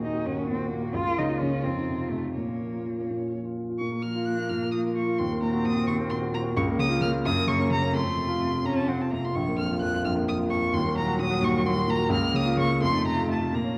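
Stormy and dramatic, this quick classical-period movement for piano trio in Bb minor rolls along in 6/8 at 86 BPM. A rich, smooth violin with vibrato carries the melody and a dark, expressive cello with portamento sings the second line, both over a mellow, up-front baby grand piano accompaniment with long sustain. It all sits in a wet recital hall and on worn, warbling old cassette tape with pitch drift, a 13.8-second cut from a longer piece.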